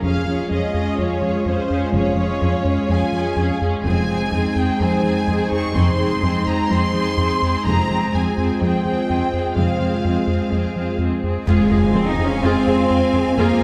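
A straight 4/4 pulse at 126 BPM drives this relentless, futuristic hybrid orchestral and electronic film score in F minor, where a lush, smooth-topped violin section carries the melody until 11.0 seconds over a focused viola accompaniment, a hollow, flute-like pad with chorus, a round, deep analog bass riff, a background chamber double bass section and distant cellos, before a bright second violin line, a very quiet mellow French horn section and an electronic impact arrive at 11.5 seconds, all set back in a wet scoring-stage reverb.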